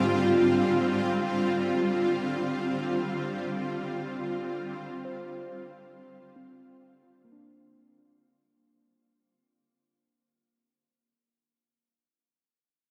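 A shimmering ambient pad sits up front, its bright, ethereal sustained chords carried by chorus, an octave-up shimmer reverb and a granular, detuned texture with slow attack and long release. This luminous, weightless ambient passage, cut from a longer piece, floats in free time in Bb mixolydian, moving from Abmaj9#11 to Bbadd9 at 1.5 seconds. Beneath it, very quiet muted synth keys with a soft, felt-like touch play dark, intimate arpeggios, their fast-attack, decaying notes colored by a noise layer, a filter sweep and chorus. The whole mix is soaked in a huge, dreamy reverb, and the passage fades out over its first 8.6 seconds. The pad stops at 8.6 seconds, leaving the keys alone until 10.6 seconds.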